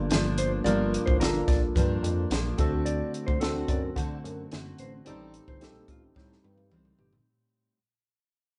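A compact cocktail drum kit sits up front in this short cut from a longer indie and bedroom pop piece, its dry acoustic sound marked by a high-tuned snare and a punchy kick, with hi-hat and toms in the mix and a drum fill arriving at 6.2 seconds. Beneath it, a chorused synth bass gives a retro, glossy low end, blending pulse-wave, sawtooth and triangle tones with pulse-width and ring modulation and a plucky filter. A dark, full-bodied jumbo steel-string acoustic guitar is picked with a vibrato effect, while a worn, slightly out-of-tune tine electric piano plays clean through a combo amp. A mellow, fingered electric guitar carries a second line from 0.4 seconds. The mood is wistful and lonely at a straight 109 BPM in 4/4, moving through Gm7, D7 and Am7b5 as the band plays live in one room with light reverb while the whole passage fades out.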